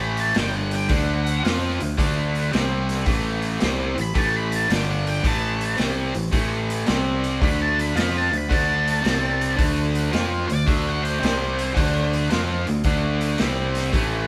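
A live-in-one-room take with a moderate stone room reverb gives this gritty, driving slice of blues rock and southern rock power-trio playing its raw, shared space, swinging at 110 BPM in 4/4 with a slightly sharp tuning. An overdriven, double-tracked stack guitar sits up front pounding out the riff, a bright, growly picked bass punches underneath, and a vintage kit with a punchy kick and rolled-off top joins at 0.2 seconds. Over the chord changes a dark octave-fuzz lead guitar with wah carries the melody until 12.1 seconds.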